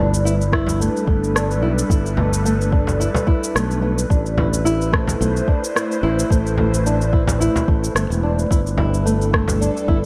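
Light reverb surrounds this hypnotic, mystical organic downtempo excerpt, cut from a longer piece and set to a gently swung sixteenth-note feel. A warm, thumb-plucked flamenco guitar with fresh strings plays delayed arpeggios over an airy, breathy pad of sustained chords with chorus, and beneath them sits a bright, growly fretless electric bass up front. Both the pad and the bass carry sidechain pumping as the harmony moves from Gadd9 to Am at 4.1 seconds and back at 8.5 seconds. Electronic cabasa and rim click come in first, followed by a soft electronic kick that sits forward and then a deep, large acoustic frame drum played with hard hands in a small room.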